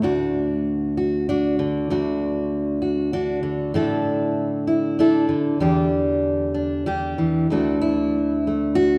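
Peaceful and hopeful, this short folk excerpt features a solo fingerpicked steel-string acoustic guitar with a full-bodied dreadnought tone and audible finger squeak, sitting up front in a lush concert hall reverb as it moves freely in rubato 3/4 around 97 BPM through D, Asus4 and Em7 before settling back on D at 7.5 seconds.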